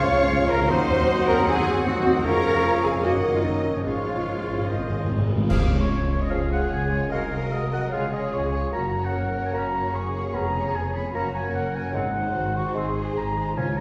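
Heard from further back on a reverberant scoring stage, this graceful, lively excerpt from a fast, dramatic romantic orchestral movement flows with a rubato feel. A lush violin section with soft-attacked vibrato carries the melody over bowed cellos and rich, even double basses, while a dark, woody viola section and a mellow bassoon accompany; a second violin line, a pure metal flute, a distant oboe and a bright, vintage-toned clarinet weave second lines around it. Ringing fingerpicked harp arpeggios and very quiet, roomy French horn chords sit underneath; dark trombone chords and mellow trumpet stabs drop out at 5.3 seconds, cymbal swells, clashes and bass drum enter at 2.2 seconds, and crisp, hard-mallet timpani return at 11.9 seconds.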